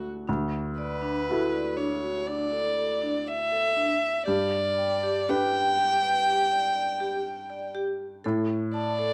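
A dark, close violin carries the melody at the front of this tender, intimate neoclassical excerpt, its bowed line smooth on top with a soft attack, light vibrato and the hushed sul tasto colour of a single player. Beneath it, an upright piano supplies the accompaniment from the first moment, woody and natural, with its action noise audible up close. Entering at 0.3 seconds, a vibraphone struck with medium hard mallets adds metallic, ringing arpeggios a step behind the front, shimmering with a medium motor vibrato and a touch of slapback echo. In D major at a slow 60 BPM in 4/4, the phrasing moves with a loose rubato as the harmony settles from Dadd9 to G at 4.3 seconds before the chords fall away at 8.2 seconds. A light, small-room reverb keeps the whole sound near and private.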